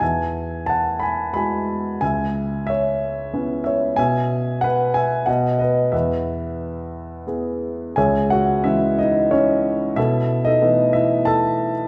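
Hopeful and warm, this brief excerpt from a longer classical piece features a lone grand piano, intimate and close with audible action noise, playing a lyrical line in E major at 91 BPM in a flexible, rubato 3/4, moving through Eadd9, C#m7 and a Bsus4 resolving to B and back to E before a new passage at 8.0 seconds turns to C#m and settles on B7sus4, all carried by the long, wet bloom of a recital hall.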